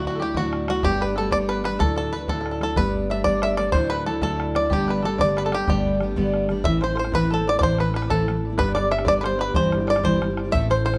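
A rollicking 6/8 jig at 124 BPM in G major drives this bright Celtic folk excerpt, with a twangy, fingerpicked bluegrass banjo carrying the melody up front in plate reverb over a very quiet second banjo line, a full-bodied jumbo steel-string guitar fingerpicking the accompaniment, a woody, thumpy upright bass and a boomy bodhran in the background, all playing throughout as the harmony moves from alternating Dadd9 and Gadd9 to Am at 6.7 seconds, then G and C/G.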